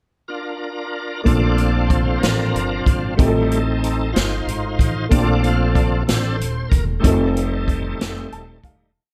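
Slow gospel in 6/8 at 62 BPM, counted in dotted quarters, uplifting and soulful in Bb major. A bright tonewheel organ opens the pickup bar at 0.3 seconds, holding full, shouting chords through a fast rotary speaker with light overdrive and chorus vibrato. A baby grand piano joins it at 1.2 seconds, and the organ stays up front as the lead voice once the verse begins at 1.3 seconds. There the swinging big-band drum kit settles into a slow six-eight groove of hi-hat, boomy kick and medium-tuned snare, sitting forward in a natural studio room, while a pizzicato upright bass with woody steel strings plays a slow gospel line dressed with chromatic approach notes. The piano, with audible action noise and short sustain, adds close-voiced held chords, grace notes and brief fills, closing with a fill from 8.0 seconds. The harmony moves between Bbmaj7 and F7 chords under light reverb, and the piece fades out from 7.0 seconds to its end at 9.0 seconds.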